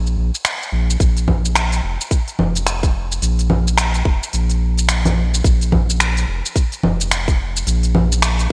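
A tight, up-front electronic kick drum anchors this hypnotic, earthy organic downtempo excerpt, arriving at 1.0 seconds and dropping out at 7.4 seconds. Beneath it, a round analog bass sits in the deep register between F1 and Bb1, with a sine-like, dark tone, a fast attack and long sustain. An organic electronic drum kit of congas, finger snaps, smooth hi-hat and shaker runs almost the whole way through, its gated reverb giving the percussion a clipped, produced sheen. The groove moves at 108 BPM in 4/4 with a 60% swing on the sixteenths, lending the pulse a relaxed, rolling lilt. Light reverb and a digital ambience frame the bright, 1980s-style production, which is cut from a longer piece.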